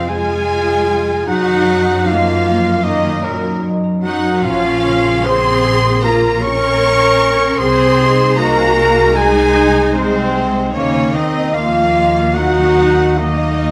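Rubato in 4/4, this longing, moving cinematic film-score fragment sets a rich, expressive violin section on the melody, while a very quiet second violin section, a pure flute, a dark, distant clarinet and a soft-edged oboe add second lines, clear violas accompany in the background, a roomy French horn section holds sustained chords, a ringing fingerpicked harp plays arpeggios, and smooth cellos with woody double basses carry the bass, set in a moderate scoring-stage reverb.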